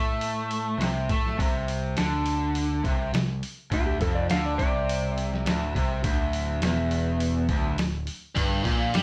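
A straight 4/4 pulse at 103 BPM drives this gritty, brooding classic rock piece, with a growly, punchy overdriven electric bass sounding from the very start and a muffled, pitched-down sampler-style drum kit coming in just after, putting a thumpy kick and medium-tuned snare up front. A bright, cranked stack guitar carries the riff over an Amadd11/C chord, and a dark, clean lap steel enters at 3.7 s with slide and volume swells as the harmony drops out. At 8.4 s a tight distorted guitar adds its own riff on G5, the band sounding as if playing live together in one room with moderate reverb.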